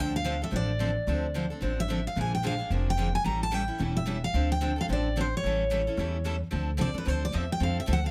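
The rhythm swings at 220 BPM in 4/4, giving this short cut from a longer piece of jazz manouche a brisk, bittersweet lilt in D minor. A full-bodied dreadnought steel-string guitar, picked and up front, carries the melody, while a bright concert-style guitar with audible finger squeak picks accompaniment alongside it. A second accompanying guitar with fresh strings sits in the background and drops out at 6.4 seconds. Underneath, an upright bass with gut strings is plucked pizzicato, its woody, dark, thumpy tone placed close and up front. The harmony moves from Dm7 through Bb7 and A7, back to Dm7 and A7, before arriving on Dm7 again at 6.5 seconds, where the lead guitar opens a solo. Close, detailed microphones and light reverb keep the acoustic strings intimate and clear.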